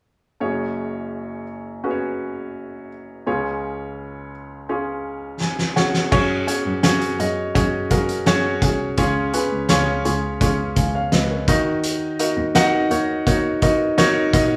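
A clear, polished baby grand piano opens this uplifting, anthemic piano-driven pop excerpt, joined at 5.4 seconds by a loose, muffled indie drum kit with a fat snare and tight kick, which enters with a fill that overlaps a piano fill. A dark, woody bowed cello with vibrato enters distant at 6.1 seconds, the band playing live in one room with a wet large studio reverb.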